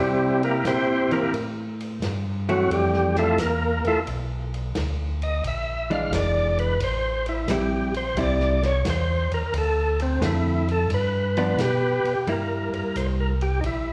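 A thick, percussive tonewheel organ takes the lead with a solo running through the first 12.3 seconds, its key click and lightly overdriven tone spun through a fast rotary speaker with slapback echo, in this soulful, greasy soul jazz organ trio cut from a longer piece. Underneath, a second tonewheel organ carries the bass line with a round, dark sound, slow rotary and chorus vibrato, while a clean, compressed hollow-body electric guitar enters at 1.1 seconds to comp. A muffled, lo-fi vintage kit of hi-hat, ride and snare swings quietly in the back, all heard as a live club gig through the venue's PA with light reverb.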